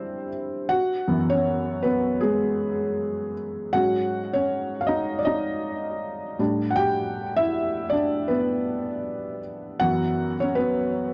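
A felt-muted upright piano plays alone through this nostalgic, cosy hip hop fragment at 79 BPM with a swung 16th-note feel, its mellow, boxy tone and audible action noise sitting up front under cassette tape colouring, a low-pass filter and tape echo, while suspended chords from D9sus4 through F#9sus4, G#7sus4 and A9sus4 to F#7sus4 drift past in a dark production with a moderate studio reverb.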